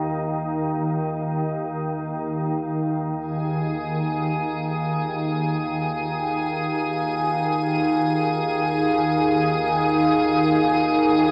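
An icy, crystalline glass pad enters up front at 3.4 s with chorus and its own reverb, floating over a nasal, organ-like drone on a low Eb and a deep, moody analog pad holding detuned, ring-modulated Ebsus2 chords with chorus, all in free time in this vast, ominous dark ambient excerpt tuned to A4 = 443 Hz, bathed in a huge, wet reverb with a small-speaker sound.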